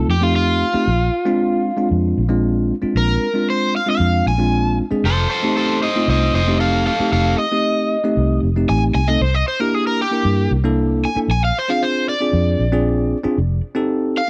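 A dry, close 1970s-style studio sound frames this laid-back, gritty straight-eighth soul blues, where an overdriven semi-hollow guitar takes a bright, picked solo with slapback echo over bell-like tine electric piano chords and a dark, round, foam-muted fingered electric bass, moving through F9, Bb9 and C9 changes in a 14-second cut from a longer piece.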